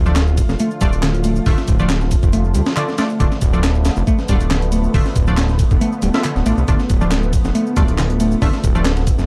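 A gritty, pitched-up breakbeat sampler kit drives this raw, energetic breakbeat excerpt at 138 BPM in straight 4/4, its thumpy kick and high-tuned snare sitting up front with a compressed, tape-flavored bite. Beneath it, a fat, saturated analog bass built from detuned sawtooths plucks through its filter and sustains on a D minor foundation in D dorian, while a growly picked electric bass plays a riff through overdrive and tape echo. A lush unison pad holds slow-blooming sustained chords, its airy noise layer shimmering with chorus and phaser and pumping against the sidechain. Short, nasal band-passed stabs cut in brightly with chorus and tape echo, and a softer house kit layers handclaps, ride cymbal and shaker behind the breaks. The production is dark overall, with light reverb giving the drums a small-room feel across the roughly 9.3 seconds.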